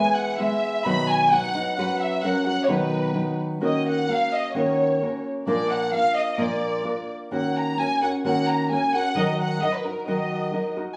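A lush violin section carries the melody from the first moment, bowed with a soft attack and expressive vibrato, sitting close and up front in the mix. A fingerpicked nylon-string guitar accompanies throughout in a classical style, its acoustic tone equally up front, with the occasional finger squeak audible. This brief fragment of Mexican mariachi folk moves in a straight duple metre, and its mood is both romantic and festive. Around 3.6 s the harmony darkens into a minor-key passage, moving between Ebm7 and Bb before settling on Ebm. The two parts play together as a live band in one room, with small-room ambience beneath a wet, large studio reverb that lends the whole a spacious glow.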